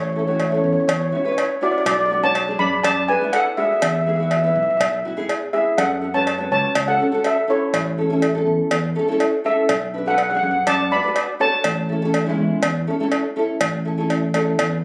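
Caught on a phone in a reverberant club, this sunny, bouncy calypso fragment puts a shimmering, airy steel pan lead with tape echo up front until 13.1 s, over a punchy fingered electric bass, a dark, fingerpicked nylon-string guitar that is double-tracked, and a compressed, saturated cowbell.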